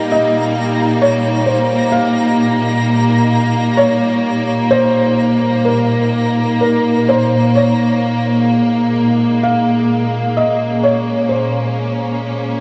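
Melancholic and reflective, this ambient fragment cut from a longer piece sets a woody, vibrato-rich string section holding sustained chords up front against a twinkling granular shimmer that stops at 7.6 seconds, while a felt-muted upright piano with audible action noise carries a soft, dark melody through delay, all bathed in a lush hall reverb.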